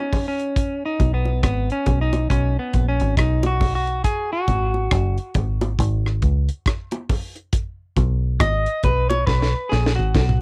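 A laid-back roots reggae groove in 4/4 sways with a lazy sixteenth-note swing, carried by a dry, deep reggae drum kit whose tight kick, high-tuned snare, rim clicks, hi-hat and toms sit up front with a cassette-tape grain. Low-tuned bongos struck with hard hands add a round, small-room patter. A clean, dark, picked electric guitar opens the excerpt at 0.0 seconds and takes a solo, its tone thickened by cassette tape, tape echo and plate reverb. From 1.0 seconds a foam-muted fingered dub bass joins, direct and amped, its round, shadowy low end pushed forward in the mix. The chords drift from a rootless G#m11 through F#sus2 to B5, giving an uplifting lift, and a drum fill arrives at 9.3 seconds just before this home-cassette excerpt, with its light reverb, is cut off.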